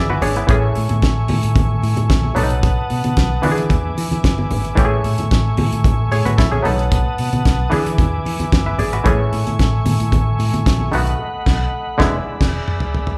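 Disco with a joyful, glamorous feel, this excerpt cycles through Amaj7, B7 and E7 as a percussive, stringy muted clav sits up front beside a damped 70s drum kit with a fat snare, tight kick and dark cymbals, while a round, amped fingered electric bass anchors the low end, a smooth tonewheel organ holds sustained chords with chorus vibrato, bright low-tuned congas sit in the background, and the whole band, playing live together in one large reverberant studio, hits a drum fill and group accent from 11.2 seconds before a closing clav fill.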